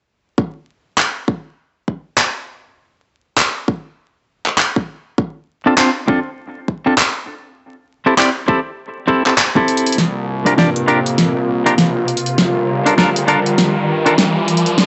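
Funky and swaggering, this glitch hop excerpt at 100 BPM with a swung 16th feel opens on a punchy, up-front electronic kick and a pop drum kit of handclaps, warm hats and a fat snare, joined at 5.7 s by clean, compressed stabs from a semi-hollow electric guitar with sidechain pumping, low-pass filter and analog delay, before a drum fill leads at 10.0 s into a build-up where a smooth, detuned analog pad with chorus and tremolo and a gritty, saturated synth bass sitting in the background arrive over C7sus4 and Gm7 chords, and an electronic riser enters at 11.3 s, the whole piece carrying a dry hardware sound with vinyl crackle and light reverb.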